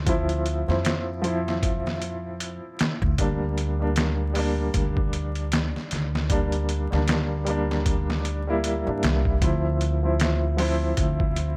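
Trip hop with a dark, brooding mood and a swung feel, this short excerpt sets an up-front, woody upright piano colored by tremolo and tape echo over a gut-strung pizzicato upright bass and a compressed, pitched-down sampler-style drum kit whose thumpy kick, medium-tuned snare and hi-hat sound muffled and overdriven, beneath a layer of vinyl crackle in a dry room, as the harmony moves from Dm9 to Em7b5/D and back.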